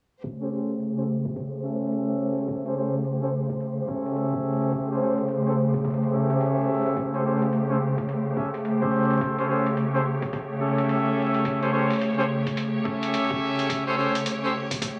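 Gritty and funky, this glitch hop excerpt moves at 107 BPM in 4/4 with a swung sixteenth feel, built over an A7#9 chord. Bright, focused studio strings hold up-front sustained chords and a brilliant, punchy horn section fires loose stabs with light vibrato, both pumping against the sidechain, while the horns run through tape echo and a filter sweep. Sampler-style, pitched-down electronic kick and hi-hat supply a compressed, gritty pulse in a small room, the kick adding a thumpy weight, and the whole mix sits in moderate plate reverb under a low-pass filter.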